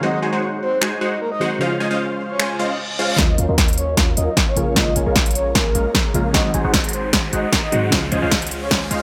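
Playful and bright, this future bass passage moves at 152 BPM in a half-time feel in Db major, cut from a longer piece. A breathy, flute-like synth lead carries the melody from the start, touched with subtle chorus, tape echo and sidechain pumping, while a soft, round pluck sits in the background and a very quiet, ethereal pad holds sustained chords with a slow attack and long release. Up front, a punchy, detuned supersaw stab plays a riff through phaser, cassette-tape colour and a low-pass filter, and a big-room dance kit of finger snaps, crisp hi-hats and a punchy snare joins at 0.8 seconds. A reverse cymbal leads into the build-up at 3.2 seconds, where a deep, boomy 808-style bass and a layered electronic kick arrive as a riser, a drum fill and filter sweeps on the supersaw and lead push forward. The chords move from Ab7 and Dbmaj7 through Ebm9 and Bbm7 before returning, all set in light reverb with a high-pass filter.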